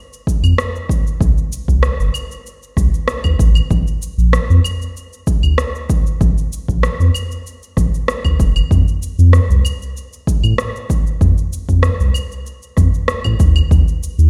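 The recording sounds as if it were played over a big sound system in a bare room, with a large studio reverb giving it a spacious, resonant character. This organic downtempo piece, cut from a longer work, has an earthy, mystical mood and a steady, straight feel in 4/4. A produced electronic percussion layer of shaker, claves and rim click opens at 0.1 seconds and sits back in the mix. A punchy, layered electronic kick drum arrives at 0.3 seconds and stays up front. A deep, warm, round sine sub bass with a fast attack and long sustain enters at 0.4 seconds. Coloured by tube saturation and sidechain pumping, it sits up front and anchors the groove through to the end.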